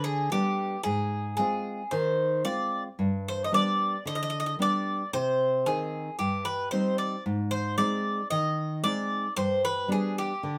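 A straight 4/4 pulse at 113 BPM carries this short cut from a longer piece of Greek folk music, written for a bouzouki band in G Phrygian dominant and tuned to A4 = 438 Hz. The mood is bittersweet and brooding. The Greek bouzouki carries the melody from start to finish across 10.6 seconds, between G4 and Eb5. Its picked double strings ring with a metallic edge, and some strings are doubled at the octave. Beneath it, a nylon-string guitar plays the accompaniment from G2 to F4, fingerpicked in a classical manner with a warm acoustic tone, and both instruments sit up front in a light reverb. The harmony moves from G through Ab6, back to G, then to Cm and Ab before settling on G at 9.4 seconds.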